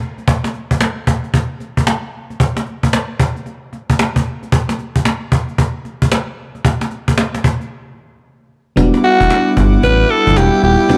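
Confident and bouncy, this swung new jack swing R&B piece opens with a snappy, vintage cajon playing alone, then after a short break from 7.7 seconds, at 8.8 seconds a glassy FM electric piano, a brassy chorused analog pad and a smooth gliding synth bass settle onto an Em9 chord, with a raspy, up-front alto saxophone taking the melody from 9.0 seconds, set in a dark, small-room production with light reverb.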